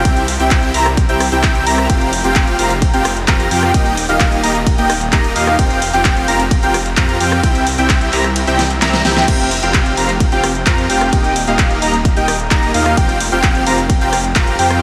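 A straight pulse drives this euphoric, emotional festival progressive house passage, with a punchy, tape-tinged electronic kick sitting up front and a big-room dance kit adding a huge snare, handclaps, hi-hat, ride, rim clicks and crashes. A dense, compressed supersaw riff with vibrato and a dark, bold unison lead playing arpeggios both pump against the kick and trail analog delay, while a lush, chorused detuned saw bass anchors the cycling C, Fsus2 and Eb chords. The kick drops out from 8.4 to 9.3 seconds, with the kit playing a fill from 8.6 seconds, and the whole mix floats in a dreamy wash of long ambient reverb.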